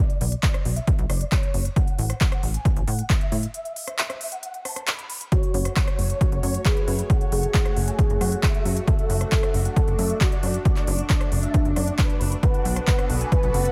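Uplifting trance at 135 BPM in F# minor, this bittersweet, euphoric fragment of a longer piece sets a huge, detuned supersaw lead, filtered and pumping in the background, over a punchy, overdriven electronic kick and a big-room kit of handclaps, crisp hats and rim clicks, all given a large-room sheen. A funky, wave-folded analog bass plucks up front through a break at 3.5 seconds, and at 5.3 seconds a velvety second lead with vibrato and portamento arrives alongside a lush, phased pad holding sustained chords. The harmony moves from B5 through F#m7/A to F#m, D/F# and Bm7 over a digital ambience.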